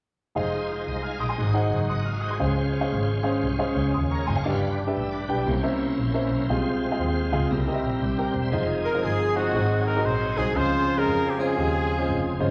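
At 0.4 seconds, an uptempo gospel piece in a swung four opens with a grand piano, a tonewheel organ and a double bass together, already in motion as if cut from a longer performance. The piano plays smooth, vintage-toned accompaniment up front, while the organ holds full, shouting chords with light overdrive, key click, chorus vibrato and a slowly turning rotary speaker. Underneath, a single bowed double bass plays sul tasto, giving a dark, woody low line with vibrato and a smooth top. At 8.8 seconds a clear solo trumpet with pop-style vibrato takes up the melody alongside a jazz-style horn section that sounds warm, distant and roomy. A generous recital-hall reverb wraps the whole ensemble in a church-like space, lending the music a solemn yet fervent character.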